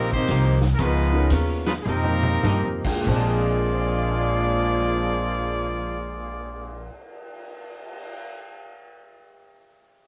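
A clear, tight trumpet section leads this joyful, brassy big band swing excerpt, backed by a trombone section with light vibrato, a dark, clean hollow-body archtop guitar in the background, and a woody pizzicato upright bass up front, as the pace slows through the first 3.1 seconds. A vintage drum kit with dark cymbals, a punchy kick and a pumping small-room sound comes in just after, a warm, polished grand piano joins in the background at 1.1 seconds, and a drum fill arrives at 1.9 seconds before the harmony settles onto Bb7. The piece has the feel of a home cassette recording in a modest booth, with plate reverb on the horns, guitar and piano.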